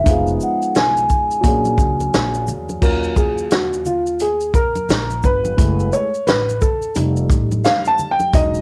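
A home cassette recording with light reverb gives this short, mellow and cool jazz-hop clip a hazy, lo-fi surface, moving at 87 BPM in 4/4 with a swung sixteenth-note feel in E-flat minor. A vibraphone played with soft mallets and its motor off carries the opening melody through an analog delay, its metallic, ringing tone sounding until 2.4 seconds over Fm7b5 and Bb7alt chords. A dark, woody upright piano sits up front throughout, and from 2.8 seconds it takes a solo across Ebm9, Gbm9 and F9 harmonies. Underneath, a pizzicato upright bass with steel strings adds a deep, woody and dark foundation. The vintage acoustic drum kit, run through cassette tape, sounds natural in a studio room, with dusky cymbals, a medium-tuned snare, a punchy kick, hi-hat, shaker and crash placed up front. Maracas and congas sit low in the mix, close and dry, adding a soft acoustic texture.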